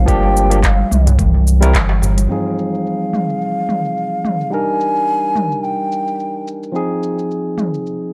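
An airy bamboo bansuri with vibrato and a crisp attack carries the melody up front in this earthy, mystical organic downtempo excerpt in F dorian, set at 108 BPM in 4/4 with a lightly swung sixteenth-note feel. Beside it, a barky, clean tine electric piano played through a combo amp supplies the accompaniment with a sidechain pump, while the bansuri, the piano and a round, ringing steel tongue drum struck with rubber mallets all trail an analog delay. Beneath them, a deep sine sub bass sits up front with a fast attack and sustained tone, and in the background a thumpy, tape-warm sampler kick joins a crisp, deep metal-shell darbuka played with soft hands. An overdriven electronic kit of handclaps, smooth hi-hats, shaker and toms, filtered and re-recorded in a small room, runs nearly the full length. The tongue drum, sub bass and darbuka fall away at 2.3 seconds as the harmony moves from Gm7 and C to Fm7 and Ebmaj7, and the bansuri ends at 6.5 seconds. 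The dry, gritty hardware sound is touched by light digital ambience.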